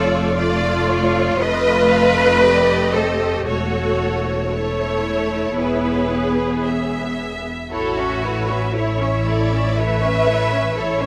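A light reverb gives this brief string-orchestra passage a soft, open sense of space, with the violin melody set slightly distant and the cellos heard close and focused. It is a slow, serene and lyrical romantic movement in A major, moving at around 56-62 BPM in 4/4 with a flexible, rubato feel. All five sections play throughout the 11.1 seconds: a clear, intense first violin section carries the melody, a second violin section with a gentle attack and smooth top adds an expressive second line, and clear violas supply the accompaniment. Beneath them, rich cellos and a smooth, even double bass section share the bass, and every section is bowed with vibrato for a lush ensemble texture. The harmony passes from Dm/F through F7 and A/E to E before settling on A at 7.7 seconds, and the fragment is cut from a longer piece.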